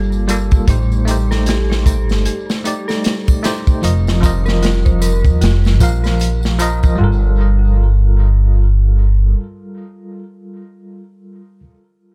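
An echo-heavy, reverberant mix opens this smoky, dark trip hop fragment in G minor at 76 BPM with swung sixteenths. A crunchy, saturated breakbeat kit sits up front beside a woody pizzicato upright bass. A bell-like tine electric piano carries tremolo, 12-bit sampler grit and tape echo, and an eerie detuned FM synth bell traces arpeggios through chorus, tremolo and analog delay in the background. A very quiet warbly, lo-fi pad holds sustained chords, and a close, background tambourine and triangle add delayed shimmer. The drums, percussion and pad drop out at 7.0 s on a return to Gm9, leaving the bass to stop at 9.3 s and the bell to ring on until 12.1 s.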